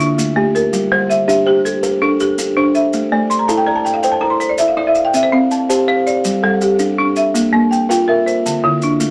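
In a straight 12/8 at 109 BPM counted in dotted quarters, this short cut from a longer southern African traditional piece turns an mbira-style interlocking cycle in G dorian, and the mood is trance-like and hypnotic. A buzzing kalimba plays arpeggios from D3 to F5 throughout, its thumbnail-plucked, woody tone ringing with a vintage, band-limited character up front in the mix. Alongside it, a folk marimba struck with hard mallets spreads arpeggios from D3 to C6, its hardwood bars sounding dry, rustic and dark yet smooth, and it adds a fill between 3.1 and 5.1 seconds. Maracas sit low beneath them, grainy and mellow. The harmony moves from D5 through Gm and Am to C5, G5 and Bb5 before returning to D5, all wrapped in a wet small-room reverb.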